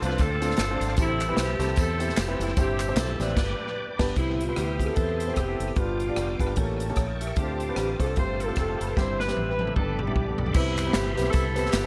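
Uptempo gospel in C major at 151 BPM, this short, uplifting passage swings its eighth notes with a hopeful lift. A clear saxophone section carries the melody with light vibrato over a grand piano whose action noise and long sustain sound warm and intimate, while a reedy tonewheel organ holds sustained chords in the background through a slow rotary speaker and chorus vibrato, its key click audible. A fingered electric bass, foam-muted and punchy, anchors the low end, and an up-front big-band drum kit with dark cymbals, a punchy kick and a medium-tuned snare drives the groove, marking a band accent at 3.4 seconds and a fill from 9.0 seconds. Tambourine, egg shaker and group handclaps add dry percussion at the start and return at 10.6 seconds, when the opening material comes back on Cmaj7. From 4.2 seconds a soft-attack, detuned portamento synth lead glides through the background with chorus and vibrato as the harmony moves through G7, A7b9 and G9sus4. 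The mix is dry of reverb but heavy with tape echo on the horns, piano, drums, percussion and lead.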